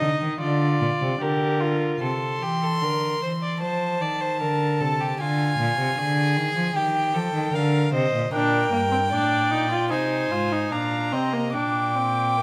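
Set in a moderate scoring-stage reverb, this elegant, lively baroque-style fugue excerpt for a period-style gut-string quartet moves at 75 BPM in straight 4/4, with a warm, up-front cello bass and a rich second violin playing throughout, a distant, lightly vibrato viola accompanying until 2.0 s and returning at 8.3 s as the music turns from Bb major to G minor, and a close, nasal violin melody with an airy bow entering high above at 2.0 s.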